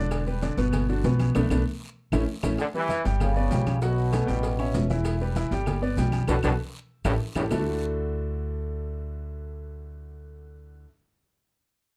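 A bright, punchy trombone section carries the melody up front in this joyful, danceable salsa, entering at 2.6 seconds in a pop-style ensemble voice. The tune sits in D major at a brisk 195 BPM in straight 4/4, with a clear baby grand piano comping intimately (its action noise audible) over a thumpy, woody upright bass played pizzicato on gut strings. Behind them, a full percussion bed of ringing low-tuned congas, metal-shelled agogo bells and timbales, woody claves, raspy guiro, grainy maracas, and very quiet round cowbell and bongos drives the groove until 7.6 seconds. Drum fills and band accents punctuate the phrase endings, and the harmony moves through minor-seventh and dominant chords before settling on a Dadd9. The piano and bass carry on alone to close this fragment of a longer piece, in a moderate studio ambience with a dark production.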